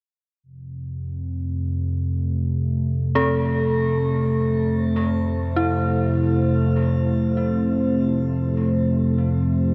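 An evolving analog drone opens this dark, cavernous ambient piece at 0.6 s, its detuned sawtooth and pulse-width-modulated tones sitting up front under a filter sweep and chorus. A slow 50 BPM in F major sets the pace, and at 2.1 s a deep, moody pad joins with sustained unison chords over a sine sub octave, bathed in chorus and shimmer reverb. From 3.2 s an eerie, inharmonic FM bell traces warbling, vintage-toned arpeggios through tape echo, all suspended in a huge, wet reverb that lingers for 8.3 seconds.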